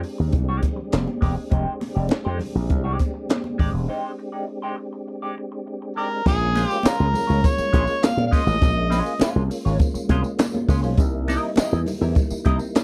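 Driving and funky, this 102 BPM funk fragment has a dry, close 1970s-style studio sound: a growly, punchy slap bass with an envelope filter and a compact cocktail drum kit with a high-tuned snare, handclaps and a dark, rolled-off top sit up front, a clean, twangy electric guitar plays accompaniment through a wah, a round tonewheel organ with key click and fast rotary speaker holds sustained chords, thin-skinned congas played with soft hands sit distant in the background, a jingly tambourine joins at 6.3 s, and a mellow harmonica with light vibrato and scooped notes carries the melody from 6.0 to 9.2 s over chords moving from Fm9 to Bbm9 and C7#9.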